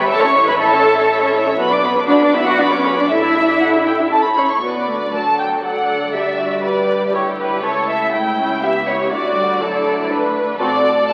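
Spirited and graceful, this quick classical-period movement for string orchestra in 3/4 is cut from a longer piece, with an up-front violin section carrying a lush, vibrato-rich melody over a close second violin line. Smooth violas supply the accompaniment, while focused cellos and even-toned double basses in the background hold down the bass, and the music moves into a new section at 4.6 seconds. A wet scoring-stage reverb surrounds the strings, and the sound carries the crackle of a very old 78 rpm record.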